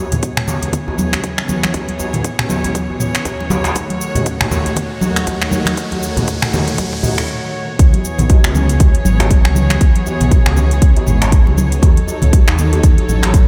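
Intimate, bowed chamber strings with light vibrato open this hypnotic, earthy afro house piece in C# minor at 119 BPM, pumping alongside a dark, detuned, saturated saw bass set in the background, while a punchy, up-front electronic kick, a drum kit of finger snaps, metallic hats, shaker and toms, hard-handed congas and a distant, cracking djembe carry a swung 16th-note feel, and a background riser builds from 2.4 s to 7.3 s before a brief break and the drop at 7.8 s.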